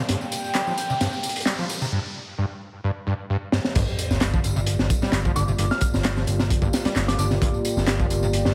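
Heavily compressed with a radio-like squeeze, this short cut from a longer breakbeat track sits in light reverb and studio ambience, with a swaggering, raw mood at 131 BPM in G minor. A crunchy acoustic breakbeat kit drives it up front, its punchy kick, high-tuned snare, dark cymbals and rolled-off, saturated top giving the grooves a gritty edge, while analog electronic tambourine and handclaps, re-recorded in a small room, add texture beneath. An overdriven acid bass riff squelches through with a resonant sawtooth tone, filter sweep, ensemble chorus and tape echo, and a deep, detuned analog pad holds moody sustained chords, pumping against the beat. A riser and sub drop build the opening tension through a drum fill and a break at 1.9 seconds. The drop lands at 3.8 seconds on Gm7, when a growly, bright picked electric bass with tube saturation enters on a low G. At 5.4 seconds a crystalline FM synth bell adds a brief, warbling vintage melody, colored by chorus, tremolo, tape echo and a thin AM radio tone.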